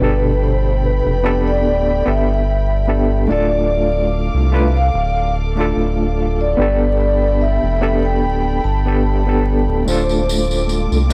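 Trip hop at a slow 73 BPM in 4/4 with a light swing, cinematic and melancholic, moving between Gadd9 and Dm in a short passage cut from a longer piece. A mellow vibraphone played with soft mallets carries the melody through tape echo, over a reedy, overdriven electric piano pulsing with fast tremolo, a veiled, muted violin section holding sustained chords, and a round, up-front analog bass thickened by tube saturation. Near the end, tambourine and triangle enter at 9.9 seconds and a flickering, grainy texture at 10.4 seconds, all within a small, dry room sound dusted with vinyl crackle.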